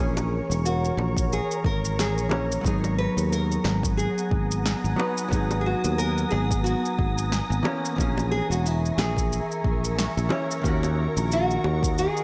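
A relaxed 90 BPM groove in 4/4 with a lazy sixteenth-note swing carries this smooth, wistful sunset chillout excerpt in G# minor, where a growly, up-front fretless bass and a dark, gritty hollow-body jazz guitar settle under a shimmering, detuned ambient pad while overdriven electronic shaker, punchy snare and a deep kick join round, low-tuned bongos in the background, a bright fingerpicked nylon-string guitar melody with digital delay enters at 0.7 seconds, and an airy, breathy wind-like texture drifts in at 3.8 seconds over chords moving from A#m7b5 to G#m7 and D#m7.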